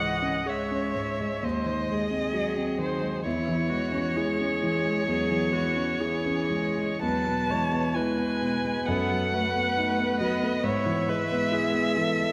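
A violin, viola, cello and concert grand piano sound together from the start in this solemn, elegiac fragment of a slow romantic piano quartet movement in C# minor, moving in 4/4 at 56-69 BPM with a flexible rubato. The rich, expressive violin carries the melody with vibrato and portamento, the cello adds a focused second line beneath it, and the smooth-topped viola joins the piano's polished accompaniment, whose deep bass and short sustain sit up front. A wet concert hall reverb surrounds the quartet as the harmony passes from C#m through G#7/D# and E to close on E/G# at 10.6 seconds.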